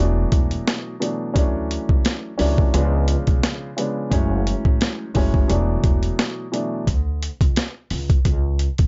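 Dry and dusky with a rolled-off top, this moody, reflective boom-bap hip-hop fragment sets a dark, mellow upright piano, up front and coloured by cassette-tape filtering, over a woody pizzicato upright bass, while a gritty, compressed, pitched-down sampler kit joins at 0.3 seconds with a thumpy kick, high-tuned snare and hi-hat in a lightly swung groove, the piano dropping out at 6.9 seconds as the chords move from E7sus4 through Dmaj7, C#7b9 and F#m9, back to E7sus4 and a chordless stretch, before settling on Bsus2.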